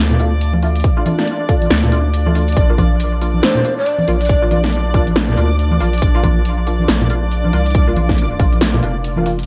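A light reverb and the softness of a home cassette recording frame this dark, meditative excerpt of deep dubstep, cut from a longer piece and sitting entirely in a drop at 139 BPM, with a half-time feel and swung sixteenths over a Dm to Bb chord change. Up front, a deep, round sub bass built from triangle and square waves holds sustained notes, while a punchy, layered electronic kick drum with a tape-warm character enters at 0.8 seconds. An overdriven house drum kit adds a punchy snare and metallic hi-hats that sound re-recorded in a large room, and compressed, saturated acoustic congas sit in the background. Muted sawtooth chord stabs with a filter pluck, short decay and ensemble chorus are carried through dub echo, beneath a reversed, granular texture that swells with a dreamy, bright glow in its own reverb. Briefly, from 3.4 to 4.6 seconds, a close-miked, end-blown bamboo shakuhachi breathes a mellow, tongued phrase with vibrato and chiff, trailing into dub echo.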